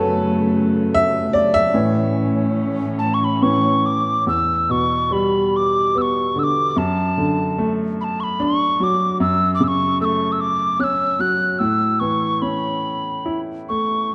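A hollow wooden whistle with a crisp chiff and gentle vibrato carries the melody from 3.0 seconds in this longing, haunting Celtic slow air in 3/4 with a free, rubato feel, set over a brilliant, woody upright piano and veiled, con sordino chamber strings that hold soft-edged sustained chords until 4.3 seconds, in a moderate concert-hall reverb with a dark production.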